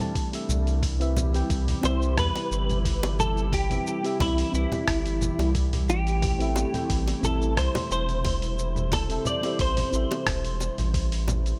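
A mellow FM electric piano and an airy, breathy pad open this sunny sunset chillout excerpt together at 89 BPM in a straight 4/4, the piano's soft, rounded tone coloured by chorus, phaser and digital delay while the detuned pad sustains chords under a chorus sheen. A dusty soul sampler-style kit of cabasa, congas, hi-hat and rim click sits gritty and tape-warm beneath them, joined by a thumpy electronic kick drum placed in the background. A round analog bass enters at 0.5 seconds, deep, dark and up front, anchoring the harmony as it moves from Am7 to Cmaj7 and back to Am7. Low-tuned bongos played with hard hands arrive close and dry, and at 1.9 seconds a clean, picked electric guitar takes the melody up front, its compressed tone coloured by ensemble chorus and digital delay. The whole groove floats in a digital ambience, relaxed and glowing like late-afternoon light.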